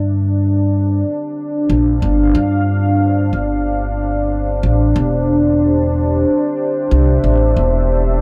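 A lush hall reverb with a long 2.7-second tail soaks this dreamy mix, giving this 8.2-second excerpt of ambient dub a deep, meditative calm. At 92 BPM in 4/4, with a gentle swing on the sixteenths, a dark ambient pad holds sustained chords up front: its detuned sawtooth and sine layers, sub octave and chorus give it a moody, warbling, vintage color with slow attacks and long releases. Beneath it, an upright bass plays pizzicato on gut strings, sounding woody and thumpy, with a touch of tube saturation, and it sits close and present. Both parts play together for the whole passage, moving from G7(no3) to Am7 at 4.6 seconds. The piece is tuned slightly above standard, to A4 = 441 Hz.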